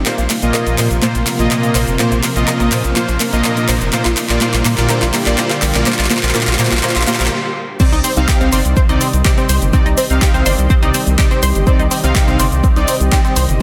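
A straight 4/4 pulse drives this emotional progressive house clip: it opens with a build-up in which a deep house kit of crash, handclaps, dark hi-hats and shaker plays a fill under a very quiet riser, while a filter sweep moves over a tight, detuned arpeggio synth coloured with chorus, phaser and delay; a round, deep analog bass, a lush background unison pad and soft supersaw stabs with tape grit and delay all pump together, and after a short stop at 7.3 s, the drop lands at 7.8 s as a deep, up-front electronic kick enters under a moderate, lush hall reverb and a dense, heavily limited master.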